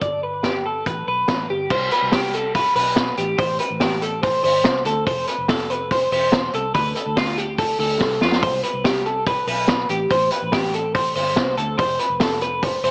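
A twelve-string electric guitar rings out bright, twangy arpeggios with a subtle chorus over a round, foam-muted fingered bass and a punchy vintage drum kit with dark cymbals and a high-tuned snare, driving this bright, youthful jangly indie pop excerpt at 143 BPM through chords moving from G to C5, Am7, F and Dm, with a drum fill at 8.0 seconds, all bathed in large studio reverb and worn cassette warble with vinyl crackle and a small-speaker sound.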